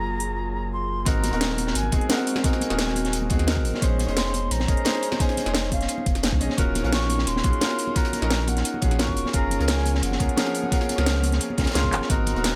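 Liquid drum and bass at 174 BPM, lush and rolling, this excerpt cut from a longer piece opens on a mellow, distant jazz flute with vibrato and a bright, brilliant grand piano, both carrying delay, over a very quiet, breathy pad with chorus and a deep, round sub bass held up front. A filter sweep on an analog synth pad leads into the drop at 1.1 seconds, where a knocking electronic kick, a gritty breakbeat kit with a high-tuned snare and rolled-off top, and congas played with soft hands in the background join the drum and bass kit's cracking snare, metallic hats and handclaps. The harmony moves through Gbmaj9, Ab9, Bbm11 and Ebm9 before returning to Gbmaj9, with the flute's expressive, tongued line riding high above the piano's accompaniment. A drum fill arrives at 11.9 seconds, and the whole sits in light reverb with small room ambience.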